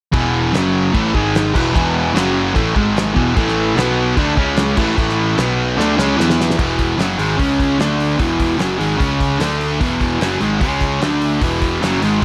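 A raw, swaggering garage rock riff opens at once at 149 BPM in a straight 4/4, with a dark, overdriven electric guitar, double-tracked and up front, driving a picked figure in E mixolydian. Beneath it a punchy, fuzz-soaked electric bass holds down the low end, while a cloth-damped drum kit thuds along with a fat snare, tight kick, hi-hat and dark crash cymbals under a rolled-off top. The first half circles a restless chain of power chords before a drum fill at 5.8 seconds, over an Aadd11 chord, tips the band into a second section at 6.6 seconds. There the riff narrows to a repeating pull between E, C#5 and D5 that gives the groove a blunt, strutting insistence. A moderate stone-room reverb wraps the band in a studio ambience, and all three parts play together from start to finish of this short cut from a longer piece.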